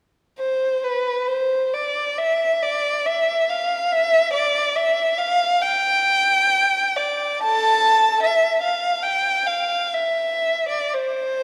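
A lush scoring-stage reverb with a 2.0-second decay surrounds this recording, though the solo violin stays up front. It is a classical piece for one unaccompanied violin, nostalgic and lyrical in mood, taken from a longer work. The warm, bowed violin enters at 0.4 s and sings alone until 11.4 s, moving between A4 and A5 with a smooth top to its tone. The player leans on vibrato and portamento, and the phrasing is free and expressive, with uneven, rubato beats that let each line breathe. The result is an intimate, songful passage whose ringing space lends it a wistful glow.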